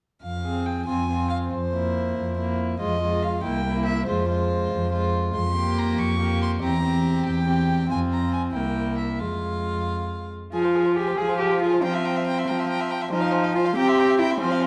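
In a straight 6/8 at 94 BPM counted in dotted quarters, this quick classical-period movement for string quartet in F minor drives forward with a dramatic, restless urgency, tuned to A4 = 442 Hz. A single violin carries the melody from C5 up to Db6, its rich, gut-string tone touched with light vibrato in period style. A second violin, close and airy in its bowing with a nasal edge, enters at 0.4 seconds with an inner line, joined by a solo viola whose reedy accompaniment sits between F3 and C4. Underneath, a single cello holds the bass up front in the balance, ranging from C2 to Ab4. The harmony circles tightly around F minor and its dominant C7, with a brief turn through Gm7b5 over F before a second section begins at 10.5 seconds, all set in a moderate recital hall reverb with a dark production. This is a fragment cut from a longer piece.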